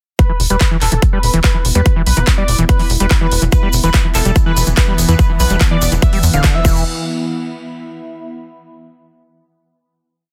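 Psychedelic trance at 144 BPM, hypnotic and alien, built on an up-front, punchy overdriven four-on-the-floor kick, a tight, saturated galloping sixteenth-note sequencer bass, a squelchy acid line with accents and slides in a 6-step loop drifting against the bar, and a bold detuned unison lead with phaser, sidechain pumping and digital delay repeating a riff. An overdriven programmed kit of bright hats, claps and crash sits beside a grainy hand-played egg shaker from 3.5 seconds, while a warbling, nostalgic tape-like pad with chorus and phaser shifts slowly in the background, a very quiet juicy blip pluck adds short answering phrases, and a swarming, tense granular drone holds chords from 4.6 seconds. After a band accent at 6.4 seconds the groove drops away, leaving the pad's final chord to ring until 8.5 seconds in a dense, heavily limited, dry mix.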